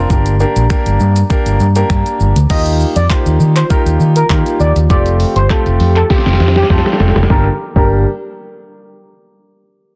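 Confident yet bittersweet, this dance-pop excerpt opens on a clear, polished baby grand piano and a dark, foam-muted electric bass, both pumping under sidechain compression, while an overdriven, up-front pop kit with a knocking kick, deep snare, handclaps, finger snaps, shaker and hi-hat drives a straight 4/4 groove over chords moving from Gm through Ebadd9 and Fadd9. At 2.5 seconds a bold, retro octave-doubled lead of sawtooth and triangle tones enters with chorus, vibrato and delay, joined by a very quiet, mellow French horn section holding sustained chords. A drum fill from 6.1 to 7.3 seconds carries the piece back to Gm, all set in light reverb within a dense, heavily limited modern master.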